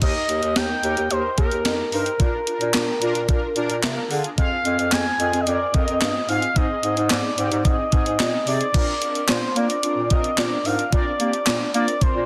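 A straight 4/4 pulse at 110 BPM comes from an up-front, sampler-style 80s digital drum machine, with a thumpy kick, a gated-reverb snare, handclaps, hi-hat and crash cymbal, all carrying a tape-warm character. This short synth-pop cut, tuned to A4 = 441 Hz, feels melancholic and cool as the harmony moves through Eb, Bb, Fm and Ab before reaching Bbadd9 at 8.7 seconds. A smooth, expressive sawtooth synth lead carries the melody between Bb4 and Ab5, with a soft attack, a resonant tone and vibrato. Beneath it, a mellow, round synth brass built from detuned sawtooth and triangle tones, with a filter sweep and a dark edge, sustains the accompaniment, and both synths are dressed in chorus and shimmer reverb. A vintage bass clarinet in classical style holds the low end from Eb2 to Bb3, and the whole mix sits in light reverb with a dense, heavily limited modern master.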